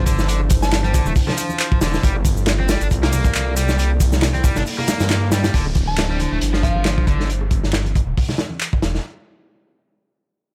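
Swung sixteenths at 137 BPM drive this funky, energetic breakbeat, cut from a longer piece in D minor. A gritty, saturated breakbeat kit with a tight kick and medium-tuned snare is joined by a punchy analog drum machine's handclaps, ride and shaker and by very quiet bongos and congas; the kick drops out at 4.7 seconds. A thick, menacing detuned saw bass sits up front under an overdriven guitar riff with tape echo, while a warbly, nostalgic pad pumps in the background over Dm9 and Gm9 and a glassy FM bell with chorus appears briefly. At 5.5 seconds a filter sweep runs on the bass as a faint downlifter enters, and the guitar stops at 7.3 seconds.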